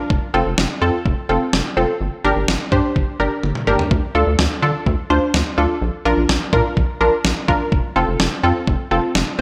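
A straight 4/4 pulse at 126 BPM drives this cool, melancholic synth-pop fragment, cut from a longer piece, with a dusty, soul-flavoured sampler-style drum kit sitting up front, its thumpy kick, fat snare and toms sounding compressed and gritty, as if re-recorded in a large room. A drum fill arrives at 3.4 seconds. Beneath it, a rubbery square-wave bass with a sine element moves between F1 and D3, its resonant filter pluck giving a bouncy, hollow, dark tone that evolves as it sustains. The accompaniment is a lush, punchy unison pluck in the C4 to C5 range, built from detuned sawtooth and triangle layers with a noise layer, wave-folding and a filter sweep, treated with analog chorus and placed up front with a fast attack and decaying tail. The harmony moves F, Gm, Dm and Bb before returning to F around 7.7 seconds, and a moderate recital-hall reverb lends the whole mix a sense of space.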